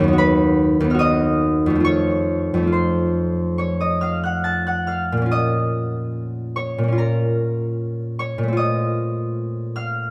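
A concert harp, up front and ringing, carries this mysterious, wistful classical solo, its fingerpicked tones warm and close across a range from D#2 to A6. Played in Bb minor with a rubato feel around 67-77 BPM in 4/4, the brief excerpt drifts through B/D#, F, Bbm and F7/Bb chords. Detailed close microphones capture the instrument's acoustic body, set within a moderate concert hall reverb with a 1.9 s decay.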